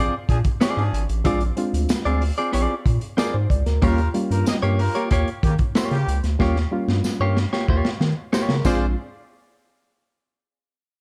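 A straight 4/4 funk groove at 93 BPM sets a playful, energetic mood, with a crunchy, gritty breakbeat kit and a round, deep analog bass up front, clean picked electric guitar with spring reverb, a punchy horn section with vibrato as the second line, jingly tambourine in the background, and reedy, slightly out-of-tune electric piano stabs with overdrive entering at 1.2 seconds, moving between Bb9 and Eb9 chords before a drum fill from 6.4 seconds and an electric piano fill at 8.0 seconds in this dark, warm excerpt cut from a longer piece.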